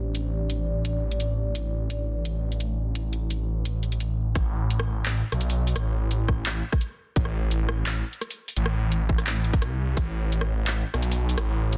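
A swirling, thick detuned saw bass, saturated and run through a phaser, sits up front for the whole of this half-time drum and bass excerpt at 171 BPM in A minor, holding low sustained notes with a fast attack. It opens beside a deep, moody analog pad whose slow-attack chords carry chorus and a vintage 12-bit sampler grit, pumping against the sidechain in a dark haze until 4.4 seconds. An overdriven electronic drum kit with bright hats, handclaps and rim clicks runs throughout, dressed in studio reverb. At 4.4 seconds the drop arrives, the harmony shifts from A minor to Asus2, and a tight, overdriven electronic kick punches in until 10.0 seconds. The mood is cinematic and spacious, set in a digital ambience with a dense, heavily limited modern master.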